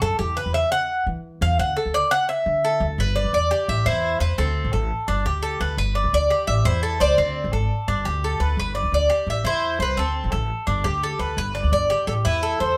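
A bright, metallic Cuban tres picks arpeggios on its doubled strings over a woody, thumpy pizzicato upright bass at 172 BPM in G major, and at 2.6 seconds a second, mellower tres enters with a picked melody, giving this danceable, warm Cuban son and guajira fragment the up-front sound of a band playing live together in one reverberant room.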